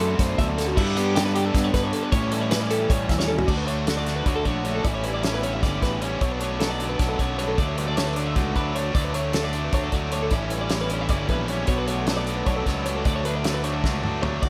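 The up-front loose indie drum kit, with its tight kick, medium-tuned snare and fills at 3.2 seconds and again near the close, drives this intricate, bright math rock and midwest emo cut in D major at 307 BPM in 7/8, as a double-tracked overdriven guitar riff and clean, compressed twelve-string arpeggios ride over a background twangy, slightly broken-up guitar from a small old amp and a growly fuzz bass, all under light reverb through chords like Dmaj7, A9sus4 and Bm9.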